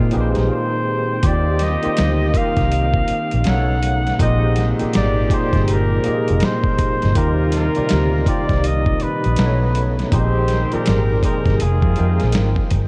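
R&B neo-soul at 81 BPM with a swung sixteenth feel, sultry and late-night, where a clear, vibrato-tinged flugelhorn carries the melody from 0.5 seconds over a barky tine electric piano with ensemble chorus, a very quiet rotary-speaker tonewheel organ with key click, tight jazz-style horn stabs in the background, a dark foam-muted fingered bass up front and a gritty, overdriven sampler-style drum kit with a thumpy kick, all moving through chords such as Bb13sus4, Eb6 and B9 in a dreamy mix soaked in huge ambient reverb and cassette tape haze.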